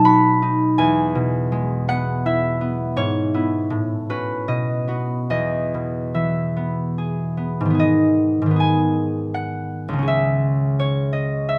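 A solo concert harp carries this graceful, serene classical piece, its fingerpicked strings sounding ringing, warm and up front across a range from C#2 to B5. Set in E major and in 3/4 time, the music moves at a gentle 70-86 BPM with a rubato feel. The opening passage resolves from B7 to E, then moves through E/G#, F#m/A and B before settling back on E. At 7.8 s a new passage turns toward G#m and then C#m, and the short cut from a longer piece closes at 11.6 s. A moderate stone-room reverb surrounds the harp with a sense of space.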